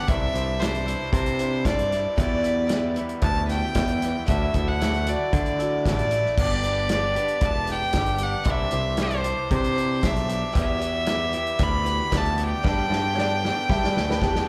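Folk rock and heartland rock at 115 BPM in G major, hopeful and jangly, caught live through a club PA, where a biting, up-front fiddle carries the melody over a boxy picked acoustic archtop guitar, a slightly broken-up electric guitar riff, a growly picked electric bass and a natural country drum kit with a punchy kick, moving through Cadd9, Em, Dadd9 and G before a drum fill at 12.6 seconds and a dark, worn upright piano slipping in at 13.1 seconds as this cut from a longer piece closes.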